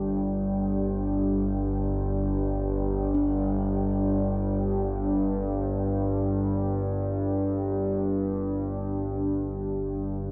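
Vast and ominous, this dark ambient drone drifts in free time, its tuning set slightly low at A4 = 437 Hz, in a short passage cut from a longer piece. From the first moment an analog drone sits up front in the low register, its sawtooth and pulse-wave tone warbling and evolving with a resonant, vintage character wrapped in chorus. Above it, a dark analog pad holds sustained chords that open on G5, its detuned sawtooth and triangle layers and sub octave giving a deep, full-bodied weight, also thickened with chorus. At 3.1 seconds a bronze singing bowl enters very quietly on D4, close-miked and dry, its metallic ring struck with a suede striker and carrying a slow, meditative beating. A huge ambient reverb with an 8.1-second decay stretches the synthesizers into a cavernous space that lasts to the end at 10.3 seconds.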